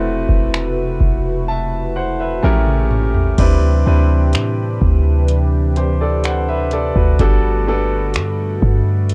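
A straight 4/4 groove at a slow 63 BPM sets a longing, sensual mood in this short clip of contemporary R&B. A booming analog drum machine enters at 0.3 seconds with a deep kick, metallic hi-hats, finger snaps, crash cymbal and toms, and its sound was re-recorded in a small room. It plays a fill from 2.4 to 3.4 seconds, leading out of the opening section into a longer second section. A clean 808-style bass sits up front with a boomy, sine-like tone, fast attack and decaying notes. A clear, vintage grand piano carries the accompaniment through rich chords such as Am69/E, A7b9, D13sus4 and Gmaj9. Behind it, a shimmering, retro pulse-width pad holds slow-attack chords with chorus, ring modulation and a moving notch, pumping under sidechain, all set in light reverb with the character of a home cassette recording.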